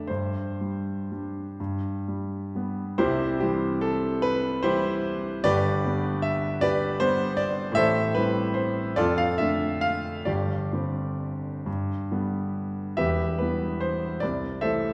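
A wet scoring-stage reverb, with a decay of about 1.6 seconds, surrounds this solo grand piano and places the listener further back in the room, though the instrument's smooth, vintage tone still sits up front. It is a romantic classical character piece in C major with a warm, hopeful glow. The music moves in a slow, rubato 6/8, with the dotted-quarter pulse drifting between 38 and 53 BPM. The piano covers a range from E1 up to F5. A brief opening hovers on Gsus4 resolving to G. From 3.0 seconds a longer passage unfolds through C, G, Am7 and Dm/F, returns to the Gsus4-to-G suspension, and then turns toward Em and Am/C, where this 14.9-second fragment of a longer piece breaks off.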